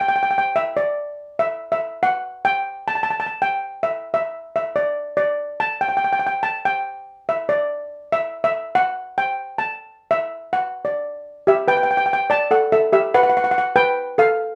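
A lightly swung 4/4 calypso groove drives this sunny, carefree fragment of a longer piece, where a lone lead steel pan, struck with hard rubber sticks and sitting up front, rings out metallic and shimmering between G4 and A5 in a lively, reverberant studio room, moving into a new section at 11.4 seconds that touches D5 and G9 chords before the cut at 14.6 seconds.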